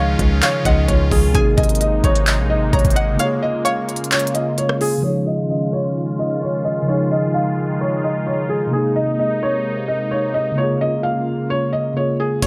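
Wistful yet triumphant half-time trap at 130 BPM in Db major, cut from a longer piece, where a soft, intimate felt-muted upright piano with audible action noise carries the melody over a mellow tine electric piano and an airy, detuned sawtooth pad, while a nasal, twangy resonator pluck with chorus and delay adds a second line, a punchy sine 808 and a crisp, knocking trap kit with claps, rim clicks and crash drive the opening until the 808 cuts out at 3.2 s, the pluck stops at 4.5 s and the drums drop away soon after, and a filter sweep runs from 5.0 s under the piano, electric piano and pad in a light reverb.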